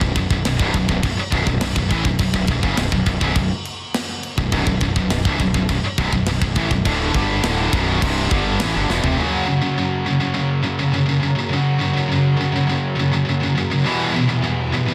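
A tight, up-front metal drum kit with bright cymbals drives this aggressive, relentless heavy metal excerpt alongside a growly fuzz bass and a wall of high-gain and dark double-tracked overdriven guitar riffs, until a drum fill at 8.9 s gives way at 9.2 s to the guitars joined by a soft, breathy, chorused pad in the background.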